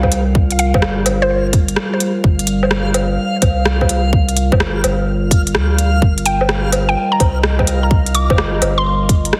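Wistful and ghostly, this short future garage passage moves at 127 BPM in G minor, its 16ths swung at 66% over a steady 4/4. A tight, layered electronic kick sits up front beside a crisp, tape-warm drum kit of hi-hat, rim click and woodblock, re-recorded in a large room. A deep, round dub sub bass and a dark, detuned analog pad with chorus, phaser, 12-bit sampler grit and sidechain pumping carry the harmony from Gm7 to Ebadd9/G at 6.0 seconds. A woody, mallet-like FM pluck with chorus and delay plays a mellow, warbling melody at the start, falls silent at 1.7 seconds and returns at 6.3 seconds. Behind it all, a reversed, granular texture held on F5 adds a bright, dreamy haze from 0.2 seconds, while moderate scoring-stage reverb and heavy compression give the mix a radio-style sound.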